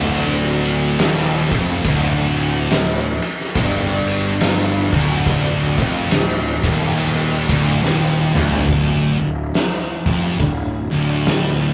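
A slow, swung stoner and doom metal riff in D minor opens at once, with two thick fuzz guitars and a tight, double-tracked distorted guitar grinding out low riffs from D2 to G2 over a growly, overdriven picked bass an octave beneath. The oversized, low-tuned drum kit sits up front at 70 BPM in 4/4, its punchy kick, fat snare and dark cymbals heard in a bright stone room with a saturated, gritty edge, moving across hi-hat, ride and toms. The guitars and bass sit further back, the fuzz guitars warm and the tight guitar brighter, building a hypnotic, ominous wall over a Dm chord. A drum fill from 7.8 to 8.7 seconds leads into a new section, where the tight guitar stops at 8.7 seconds and the fuzz guitars and bass carry on until the cut at 11.7 seconds, the drums dropping out just before at 11.5 seconds. Light reverb and tube saturation give the whole passage the rough feel of a rehearsal-room take, lifted from a longer piece.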